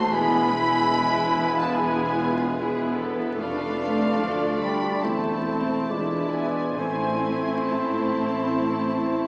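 Yearning and elegiac, this rubato classical excerpt in A minor moves at 64-74 BPM in 4/4 as a rich, distant violin section carries the vibrato-laden melody over a lush second violin line, airy flutes, a mellow cor anglais and a clear, very quiet clarinet, while violas, a dark bassoon and soft-attack French horns fill the harmony, cellos with portamento, double basses and a tuba anchor the bass, and timpani enter briefly at 6.8 seconds, all heard from further back in a reverberant scoring stage with vinyl crackle and a small-speaker sound as the chords settle from E7b9 onto Am.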